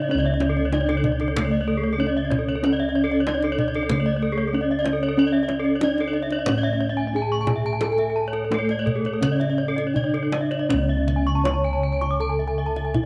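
Shimmering and brilliant, this Balinese gamelan passage in C# pelog moves at 80-94 BPM in a straight 4/4, cut from a longer piece, with a mellow bronze metallophone struck with padded disc mallets carrying the melody while two more metallophones spin arpeggios above it, one bright and airy under a horn mallet, the other dark and smooth. The paired tuning of the metallophones gives their ringing tones a pulsing shimmer, as round, up-front bossed gongs hold the bass and a tight, saturated kendang played with hard hands joins at 0.4 seconds. Light reverb surrounds the ensemble, and the music shifts into a new section at 10.7 seconds.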